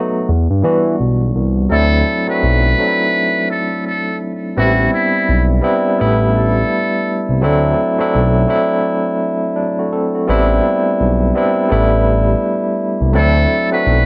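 Hazy and melancholic, this lo-fi hip hop excerpt moves at an unhurried 84 BPM in 4/4 with a loose swing on the sixteenths, slightly flat of standard pitch. A barky tine electric piano carries the chords from the start, lightly overdriven through a combo amp with a medium tremolo and a filtered, softened top. A smooth synth bass enters at 0.3 seconds, its detuned blend of sawtooth, square and triangle waves giving a nasal yet mellow tone with sustained notes and a touch of vibrato. At 1.7 seconds a trumpet with a metal mute takes the melody, buzzy, thin and breathy with a whispered, intimate jazz character, its filtered tone trailed by analog delay; it drops out at 7.4 seconds and returns briefly near the close. The harmony drifts from Em7 through D7 and Am11, and a modest small-room reverb keeps all three parts close and up front.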